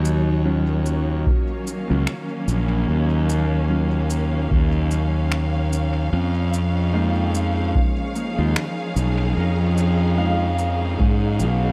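Hazy and deep, this ambient dub excerpt moves at 74 BPM in Eb minor with a swung 16th feel, shifting from Ebm9 to Fm7b5 at 6.1 seconds. A fuzzed, round, punchy fingered electric bass and a dry, deep electronic kick sit up front, while lush bowed symphonic strings hold sustained chords and overdriven electronic shaker and finger snaps carry dub echo. In the background, a bright, ringing Celtic harp plays arpeggios through a low-pass filter sweep and tape echo, a dark, clean electric guitar adds echoing stabs, and a very quiet, breathy wind-like noise texture enters at 1.4 seconds, all inside a digital ambience.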